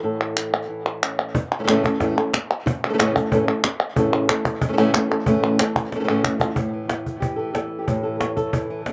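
Flamenco at a brisk 184 BPM in straight 4/4 and A major, this short cut from a longer piece feels passionate and mournful. A thumb-plucked flamenco guitar carries the melody from the first moment, ranging from A2 to C#5 with an acoustic, up-front tone. Crisp palmas hand claps join at 0.2 seconds and drop out at 6.6 seconds, while a snappy cajon with snares, played with soft hands, comes in at 1.3 seconds and runs to the end. A drum fill from 5.9 to 6.6 seconds marks the move into the closing stretch, where the harmony shifts from A to A5. The claps and cajon carry a small-room character, set in an outdoor recording with little reverb that keeps every part close and dry.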